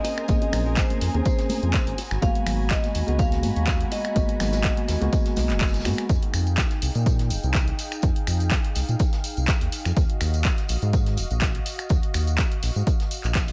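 Opening together, a smooth, late-night deep house groove sets a dark, ringing vibraphone melody with dub echo against bell-like electric piano stabs, a warbling vintage pad, veiled muted strings in the background, very quiet bright bongos and congas, an airy jazz kit and an overdriven analog drum machine with snaps, claps and tambourine, before a round, deep analog bass and a punchy, up-front kick arrive at 0.3 s, and once the vibraphone, piano, strings and hand drums fall away near 6 s, the pumping pad and bass carry on with the kick and both kits in studio reverb.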